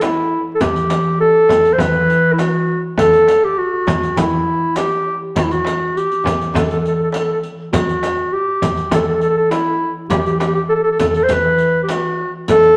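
A straight 4/4 pulse at 101 BPM drives this hypnotic, melancholic Turkish makam ensemble passage in E makam ussak. A deep, close and dry frame drum, a compressed, saturated clay-shell darbuka set in the background, and a riq with dark jingles in a small room carry the pulse, while a woody, growly pizzicato upright bass with steel strings anchors the low end. Up front, a warm, smooth-topped clarinet plays a classical-style solo melody between E4 and C5 throughout, and a wet large studio reverb with a 1.4-second decay surrounds the ensemble.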